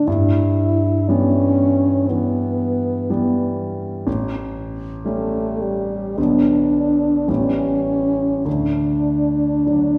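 Tender and warm, this short passage from a longer piece is a romantic classical duo for French horn and grand piano, moving at a slow 50-62 BPM in 4/4 with a flexible, rubato feel. The French horn carries the melody in a mellow, classical style, sitting up front and close-miked, with vibrato across its range from G3 to E4. The concert grand piano provides the accompaniment from A1 to D4, its sound intimate and smooth with a deep bass, a vintage character and audible action noise. Both instruments play throughout the 10 seconds, moving through Em/G, A7, Bm and A9 before settling on D at 8.5 seconds. A wet recital hall reverb, with a decay of 1.4 seconds, surrounds the duo with a sense of space.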